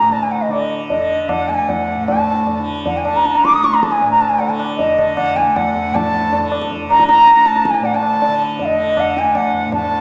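Heard from further back in a reverberant recital hall with a small-speaker quality, this serene, meditative Hindustani classical excerpt in raga Puriya Dhanashri on D (tuned to A4 = 439 Hz) moves in 5/4 at 156 BPM and gathers pace throughout. An airy bamboo bansuri sits up front with a soft attack and vibrato over a softly plucked, buzzing, shimmering tanpura drone and high-tuned tabla with a short ring, and the music shifts into a new section at 2.1 seconds.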